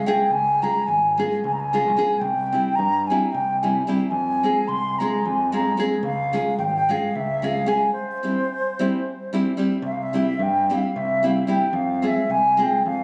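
Captured on a phone in a moderately reverberant recital hall, with club reverb and compression added, this restless, fiery fragment of a Balkan wedding-band tune moves in a straight 7/8 over Db, C and Fm chords. Up front, a pure, woody flute with crisp attack, vibrato and lifted highs carries the melody through tape echo, beside a full-bodied, fingerpicked classical nylon-string guitar. Beneath them, a bright, direct and amped fingered electric bass growls with overdrive.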